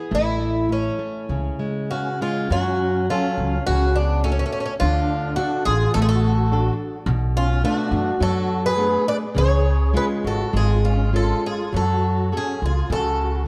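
A picked twelve-string acoustic guitar carries the melody up front, its octave-doubled, shimmering tone woody and boxy from old strings, played with a swing inside this longing, passionate fado-style ballad in a free, rubato feel. Beneath it, a bright flamenco guitar fingerpicks the accompaniment across a broad span, while an upright bass with steel strings gives a dark, pizzicato foundation that sits as near as the lead. A nylon-string guitar fill slips in at 1.6 s, and the musette accordion enters at 1.9 s as a soft, reedy second line, its wet musette tuning adding a smooth, shadowy shimmer. From 2.5 s the harmony moves from F#m through D, Bm7 and C# before settling on F#madd9. A moderate stage reverb and a dusky, mellow production wrap this excerpt, which is cut from a longer piece.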